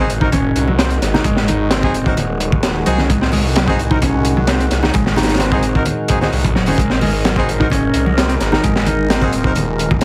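Swaggering and energetic, this breakbeat excerpt rides a crunchy, up-front drum kit with a punchy kick and high-tuned snare, a swirling phased saw bass, a bright picked electric bass riff with tape echo, tight horn stabs roughened by 12-bit sampler grit, a slow-rotary tonewheel organ holding sustained chords in the background, and very quiet hard-hand congas entering at 0.3 seconds, the whole mix squeezed into a heavily compressed radio sound.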